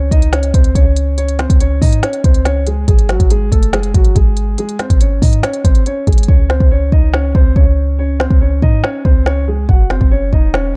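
Dark and brooding, this trap excerpt moves at 141 BPM in a half-time feel, with a warm concert grand piano carrying the melody through a low-pass filter and delay over a deep, boomy 808-style bass with a clean sine tone, fast attack and decaying notes. An up-front electronic drum kit with a deep kick, woody snare and smooth hi-hats drives the groove, and the hats drop out from 6.3 seconds onward. The chords move from C#5 to G# and back to C#5 before reaching F#5 at 9.7 seconds, all set in a dark digital ambience.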